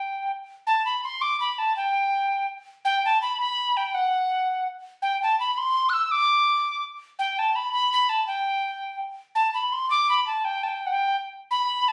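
Celtic folk in a driving 6/8 at 111 beats per minute, dark yet lively, this short cut from a longer piece features a solo wooden whistle playing from 0.0 to 11.9 seconds, ranging from F#5 to F#6 and tuned slightly low to A4 = 439 Hz. The whistle sits up front with a pure, woody tone, tongued notes carrying a chiff and touches of vibrato. Its opening phrase is restated from 2.8 seconds, heard in a moderate studio ambience with a short reverb, as if captured on a phone in the room.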